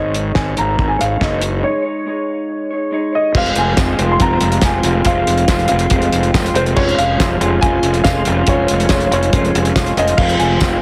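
A straight 4/4 groove at 140 BPM drives this carefree, upbeat indie rock clip, cut from a longer piece, with a cloth-damped, thuddy drum kit up front alongside a fuzzy, overdriven fingered bass, while a woody upright piano carries the melody and a dark, lo-fi guitar through a small old amp plays a riff bathed in spring reverb. A break runs from 1.6 to 3.4 seconds, and just before it ends an overdriven guitar with analog chorus joins at 3.3 seconds, followed by a jingly tambourine tucked in the background at 3.8 seconds, as the chords move from Absus4 to Fm and Db/F. The mix has a light reverb and a heavily compressed, radio-like sound.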